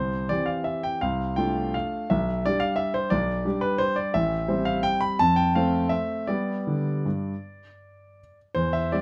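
A solo concert grand piano, deep in the bass, natural and up front, plays a sparkling, graceful classical waltz in 3/4 at 151-183 BPM with a rubato feel, moving from C through Dm7/C, G/B, Am7 and F to G across this nine-second excerpt, captured by close, detailed microphones in a nearly dry room.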